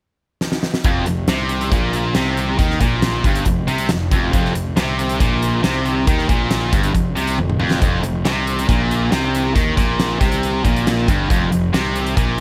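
A straight 4/4 drive at 138 BPM opens with a drum fill from the huge arena kit at 0.4 seconds, its fat snare and punchy kick up front, before the warm, fuzz-laden picked bass enters at 0.8 seconds and two picked electric guitars, one bright and overdriven, the other tight, distorted and forward in the mix, lock onto an F5 riff at 0.9 seconds, giving this swaggering, confident classic rock cut a dry sound broken by a second drum fill at 7.4 seconds.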